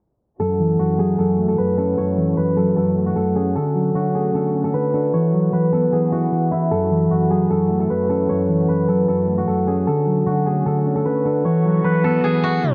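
A ringing, silvery steel-string zither, picked with fingerpicks and touched with digital delay, carries the melody up front in this melancholic, eerie half-time hip hop excerpt at 152 BPM in F# minor. A dark, clean electric guitar with subtle chorus plays the accompaniment alongside it, while a lush bowed symphonic string section holds smooth sustained chords in the background over an F#m7, Dmaj7, Esus2 progression, all three parts playing from 0.4 to 12.7 seconds. Vinyl crackle, a low-pass filter, a filter sweep, a tape stop and light studio reverb give the track its hazy character.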